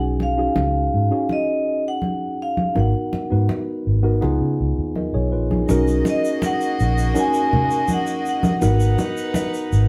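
The electric piano and the dark, punchy, foam-muted bass open this excerpt of lush 1970s-style soul at 82 BPM, joined almost at once by the ringing, metallic vibraphone melody and soft-handed, thick-skinned congas, all with a smooth, warm mood in a moderate studio reverb that feels like a band playing together in one room. The worn, slightly out-of-tune electric piano sits up front alongside the bass, moving through chords like B69, G#m9 and C#9. At 5.7 seconds a floating, sul tasto violin section enters quietly with a grainy, band-limited egg shaker as the harmony shifts to a rootless Bmaj9 and then G#m7.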